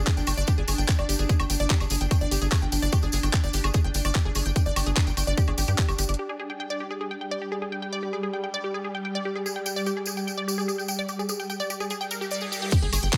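A tight, punchy sawtooth sequencer bass drives this psychedelic trance excerpt at 147 BPM in straight 4/4, sitting up front alongside a tight, layered electronic kick drum through the first 6.2 seconds. Above them, a swarming, tense drone of detuned, wave-folded sustained chords carries granular texture, 12-bit sampler grit, built-in reverb and sidechain pumping, while a lush, detuned unison pluck plays a riff with a filter sweep, digital delay and its own sidechain pumping. A produced garage drum kit adds bright hats, handclaps, woodblock and crash cymbal, all darkened by low-pass filters, and a jingly, saturated acoustic tambourine rides along, dropping out after a drum fill at 6.0 seconds before returning at 9.5 seconds. Through the middle section the drone, pluck and tambourine carry on alone until a reverse cymbal and sub drop rise from the background at 12.1 seconds. The kick and kit return with an impact at 12.7 seconds, the bass following at 12.8 seconds, and the whole piece sits in a light reverb with a driving, psychedelic mood.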